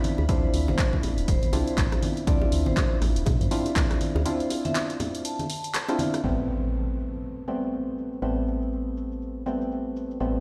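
Deep and late-night, this excerpt of swung deep house at 121 BPM in A minor moves from Dm9 to Am9, with a hollow, up-front organ stab carrying chorus, sidechain pumping and dub echo, a woody, round FM bass that pumps beneath it, a punchy, tape-warm analog drum machine with filtered hats, snare and cymbals, ringing congas and bongos played with hard hands, a very quiet silky string pad, and a metallic vibraphone with delay sitting in the background, while the electronic kick drops out at 3.9 seconds for a break and drum fill before an electronic impact lands at 6.2 seconds and a filter sweep on the drums runs to the end, all set in a stone-room reverb as if played on a big sound system.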